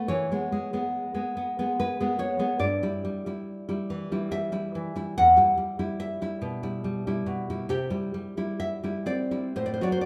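Rubato in 3/4 at about 71 BPM gives this wistful, passionate romantic piece in E minor its freely breathing pulse, as a single fingerpicked nylon-string guitar, dark and full-bodied and placed up front, moves through Em/G, Em and C in a moderate recital-hall reverb across a 10.1-second fragment of a longer work.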